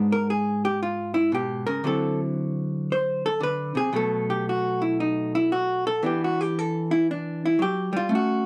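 A dark, warm production with light reverb frames this short, playful solo jazz fragment at 115 BPM in a swung 4/4, where a vintage hollow-body electric guitar, clean, picked and compressed with a warm tone, sits up front alone for the full 8.5 seconds, ranging from G#2 to C5 over chords moving through G#dim, D9, B5 and Em7.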